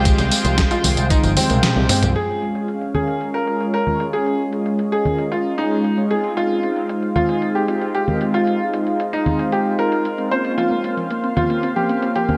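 This nostalgic, danceable italo disco excerpt at 114 BPM opens with a clear, worn grand piano melody in tape echo over a lush, thick unison pad with chorus, a warbling lo-fi pluck playing arpeggios, mellow synth brass stabs with a vintage 12-bit grit, and a bright picked electric bass through an envelope filter and tube saturation. A thumpy electronic kick and a clean 12-bit drum machine (up-front snare, congas, hi-hat, tambourine and toms, low-pass filtered in gated reverb) drive the groove: a drum fill begins at 1.1 seconds, the kick drops out at 1.2 seconds, a band accent lands at 1.6 seconds, and the bass stops at 2.1 seconds. The pad then carries a filter sweep through the rest of the excerpt, the dusty pluck returns at 10.6 seconds, and a lush hall reverb surrounds the whole mix.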